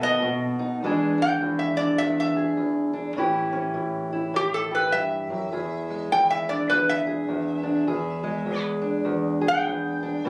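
A metallic, nasal resonator slide guitar, played with fingerpicks, carries the melody up front in this swaggering, rollicking acoustic country blues cut from a longer piece, while a dark, fingerpicked parlour steel-string guitar supplies the accompaniment at a swung 102 BPM in E mixolydian over B7, E7 and A7 chords, all caught on a phone in a club-like room with moderate reverb.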